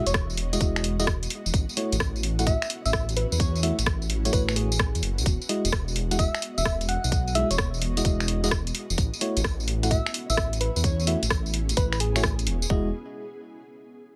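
A soft, round synth lead carries the melody over glassy, bell-like FM electric piano stabs and an ethereal, airy pad in this sunny, soulful two-step UK garage excerpt at 129 BPM in E major, swung on the sixteenths and moving between Emaj9 and A6. Almost at once a deep, rumbling detuned saw bass arrives up front alongside a tight electronic kick, joined by an up-front garage kit of finger snaps, rim clicks, tambourine and warm hats with a softly clipped snare; the lead and piano both carry chorus and delay, while the mellow background pad has ensemble chorus, tremolo and sidechain pumping. The lead drops out at 12.4 seconds, and the whole dense, heavily limited mix sits in light reverb.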